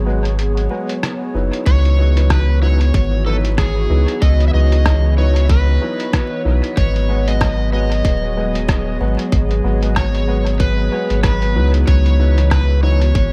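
Light reverb and a layer of vinyl crackle frame this hazy, spacious ambient dub fragment, cut from a longer piece and set at 94 BPM in 4/4 with a swung sixteenth feel in C# minor. A deep, round sub bass sits up front throughout, under an airy, breathy pad whose detuned, slightly nasal sustained chords carry a chorus shimmer. A woody upright piano with audible action noise drops short stabs into dub echo, while a muffled, pitched-down sampler-style kit of hi-hat and rim click, tape-warm and re-recorded in a small room, taps along through the same echo. After a break from 0.4 to 1.7 seconds, a tight electronic kick arrives together with an overdriven slide guitar that sings the melody through dub echo. The harmony drifts slowly between G#m7 and C#m11, keeping the mood spacious and hazy.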